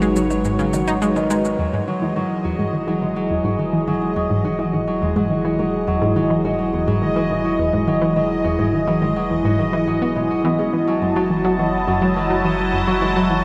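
An up-front, sweeping resonant pad of detuned sawtooth voices carries this hypnotic, expansive stretch of ambient, sequencer-driven space music, holding sustained chords that evolve and warble with a vintage character under lush chorus. Beneath it, a round analog pluck with a fast attack and a decaying filter envelope plays a riff through chorus and analog delay, while a bright, ringing Celtic harp spins fingerpicked arpeggios through its own analog delay. Electronic cabasa and percussion blips sound only in the opening 1.6 seconds, and from there a deep sine sub bass fades in beneath the harmony, which moves from G#m7 to Emaj7 and reaches F#m7 at 10.7 seconds. High above, a bubbling texture of random filter steps sits in chorus and its own built-in reverb. A huge, wet ambient reverb with an 8.0-second tail wraps the dark, warm production, and the passage is cut from a longer piece.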